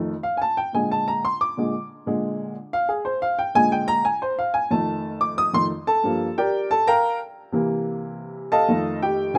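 The rhythm moves in a straight, brisk 4/4 with an energy that feels sophisticated yet danceable, in this short jazz fragment cut from a longer piece. An upright piano carries everything alone across the full 9.4 seconds, its woody, polished tone sitting up front in the mix. The playing spans from the low bass register up into the bright upper register, giving the solo a full, self-contained sound. The harmony moves through a bluesy progression, shifting from F7 to Bb7 and back before a Gm7 to C7 turnaround lands again on F7. Light reverb and a touch of studio ambience frame the piano, while the rough home-demo mix keeps the sound close and informal.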